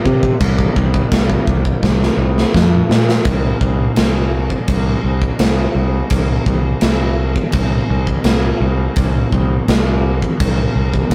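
Relentless and aggressive, this heavy metal excerpt moves at 84 BPM in a straight 4/4, cut from a longer piece and captured as a rough rehearsal-room recording with light reverb. A fuzz-drenched, growly electric bass with overdrive holds the low end between C2 and C3, while a big acoustic rock kit with bright china and crash cymbals, a medium-tuned snare and a punchy kick sits up front beside it, both playing throughout. A drum fill from 1.8 to 3.3 seconds carries the music out of its opening passage into a longer second section that runs to the end.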